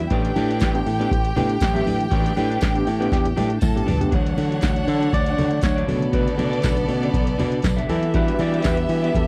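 Over a deep-kicked, punchy analog drum machine with metallic hats and handclaps at 119 BPM, this glamorous, danceable disco excerpt in D major pairs a bright, growly fingered bass with a dark, slightly broken-up picked electric guitar, a rich bowed violin section, background congas and jingly tambourine, while a barky, overdriven tine electric piano with medium tremolo takes a gritty solo from 4.1 seconds after a drum fill, moving from Dmaj7 through Bm7 to Em7 in a dry, close 1970s-style studio sound.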